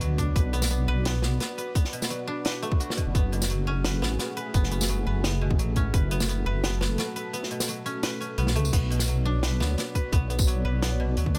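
A dark, detuned analog pad with a slow attack and a sub octave, pumping under sidechain, sounds from the very start of this heavy, cinematic half-time drum and bass passage at 172 BPM in B dorian. Alongside it from the first moment are a woody, fingerpicked koto playing echoing arpeggios, a deep, wobbling sawtooth-and-sine bass with chorus sitting up front, and a dry, compact cocktail kit with dark cymbals, a high-tuned snare and tambourine. A hard-clipped electronic kick punches in at 0.2 seconds, drops away at 6.0 seconds, and returns at 8.7 seconds. Meanwhile the harmony moves from Bm to F#madd9 at 3.1 seconds and back to Bm at 8.7 seconds, all within a small room ambience in this excerpt from a longer piece.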